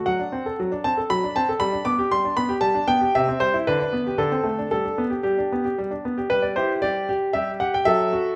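Classical-period piano sonatina in a straight 3/4, cheerful and elegant, played solo on a polished, up-front concert grand whose intimate sound carries deep bass and audible action noise, heard in a moderate recital hall reverb as it moves from its opening section into a new one at 6.3 seconds in this short cut from a longer piece.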